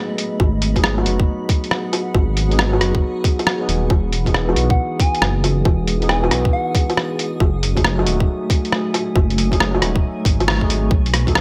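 A swung 4/4 groove sets a ghostly, nocturnal future garage mood, with a tight, up-front electronic kick and a muffled, pitched-down sampler-style kit of hi-hat, rim click and woodblock, while a deep, rumbling detuned saw bass pumps under sidechain beneath chords moving from G#m7 to Emaj7 to F#m69. An overdriven, gritty tine electric piano with vintage sampler grit, filtering and delay carries the accompaniment, and a cloudy granular pad drifts in the background with its own reverb and pumping. A round, gentle FM lead with chorus and dub echo surfaces briefly from 4.7 to 6.9 seconds, the band accents together at 10.5 seconds, and the whole sits in a moderate recital-hall reverb in this short cut from a longer piece.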